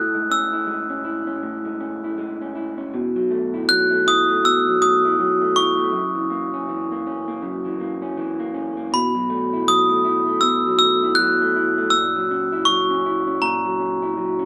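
Recorded live in one room with a wet studio reverb, this dreamy, hazy indie pop excerpt sways over a gently swung 16th-note feel. Up front, a glockenspiel played with brass mallets carries the melody in a bright, bell-like, sparkling voice, while an electric guitar through a small old amp supplies dark, slightly broken-up, lo-fi accompaniment with a warbly pitch drift. The harmony moves from Amaj7 through B7sus4 and F#7, closing on F#7/A#.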